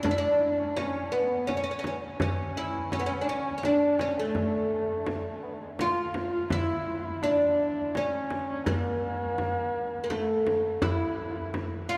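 Persian modal ensemble music, stately and warm at 84 BPM in a straight 3/4, is carried by a bright, woody oud plucked with a plectrum on its fretless double strings up front as the melody, joined by a dark, nasal kamancheh second line bowed with vibrato and portamento, while a close, dry frame drum under soft hands plays until 11.7 seconds, all bathed in a cathedral-like reverb in this short cut from a longer piece.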